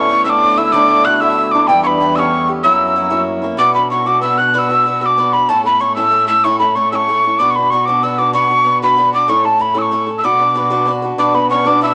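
Dark, lively and driving, this Celtic jig excerpt in 6/8 at 126 BPM settles into B minor at 3.6 s, with a breathy metal whistle carrying the melody up front with chiff and vibrato, a shimmering, ringing hammered dulcimer playing a second line that drops out at 6.1 s and returns at 11.2 s, a boxy, picked swing-style acoustic guitar accompanying, and a woody bowed cello holding the bass, all set in moderate studio reverb.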